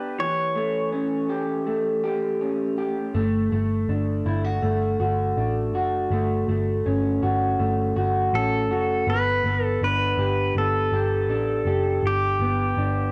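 Dream pop at 81 BPM in 4/4 with a straight feel, set in G lydian, with a floating, blissful mood in this short cut from a longer piece. A dark, slightly broken-up electric guitar plays fingered arpeggios throughout, sitting up front and bathed in lush chorus, cassette tape coloring, plate reverb and tape echo. Pedal steel guitar carries the melody, clean and compressed, played with fingerpicks, slide and volume swells, heard briefly at the start and returning at 8.4 seconds with plate reverb and tape echo. A vintage muted picked electric bass, round and foam-muted with an amped tone, enters at 3.1 seconds and holds the low end up front. The chords move from A7 through a rootless Em11 and F#m to G, all within a wet studio reverb and the faint mains hum of a home cassette recording.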